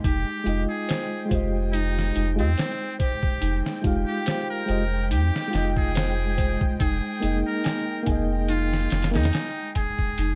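A small-room ambience surrounds this melancholic, dark trip hop excerpt in F minor at 71 BPM with a light 16th-note swing, moving from Fm9 to Ebsus4/F at 6.8 seconds. A gritty, pitched-down sampler-style drum kit with a thumpy kick and studio reverb sits over a deep, round dub sub bass placed up front. A buzzy, thin muted trumpet carries the melody until 10.3 seconds over a reedy electric piano with tremolo and tape echo that drops out at 9.3 seconds, while a delicate, bell-like celesta arpeggiates through tape echo and a dark, woody string section holds lush chords in the background with vintage 12-bit sampler grit.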